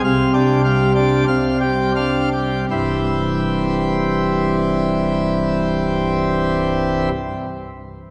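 A solo pipe organ opens on a full, brilliant plenum with mixtures, baroque voicing and audible chiff, placed up front and spanning C1 to F5, in this majestic classical toccata excerpt in C major at 79-104 BPM in straight 4/4, tuned to A4 = 437 Hz, which slows over a G5/C chord before settling onto C at 2.7 seconds, the organ ceasing at 7.1 seconds within a wet church reverb with a 2.7-second decay.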